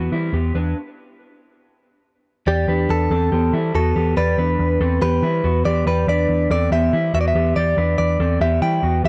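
A dry, close recording in a 1970s studio style frames this restless, wistful indie pop fragment in E minor at 142 BPM, cut from a longer piece. A dark, slightly broken-up electric guitar through a small old amp plays lush-chorused arpeggios over a round, foam-muted picked bass on an Em7 chord, and the band stops from 0.8 to 2.5 seconds. When the Em7 returns at 2.5 seconds, a bright, clean direct-recorded electric guitar enters with the melody, up front alongside the others.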